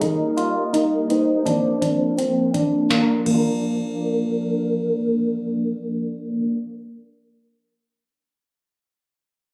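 Blissful and ethereal, this dream pop fragment pairs a dark, clean semi-hollow electric guitar playing chorus-soaked arpeggios with mellow, organ-like ensemble string chords and a hollow, woody clarinet-like synth lead carrying the melody through tape echo, while a booming analog drum machine with deep kick, crisp snare and metallic hats stops at 3.5 seconds, the whole heard through moderate plate reverb and captured on a phone in the room, with a filter sweep over the opening 2.9 seconds as the chords move from Eb through Fsus4 to Bb.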